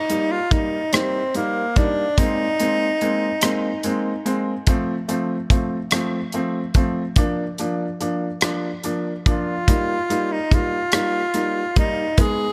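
A gently swaying six-eight pulse from the studio drum kit, with hi-hat, rim click and a punchy kick under a rolled-off top, carries this tender pop ballad fragment as a woody upright piano, its action noise audible up close, plays chords moving from Eb through Abadd9, F and Bb back to Eb. A breathy, whispered tenor saxophone with light vibrato and tape echo sings the melody until 4.3 seconds, falls silent while the piano and drums carry on, then returns at 9.3 seconds. A light small-room reverb keeps the sound intimate.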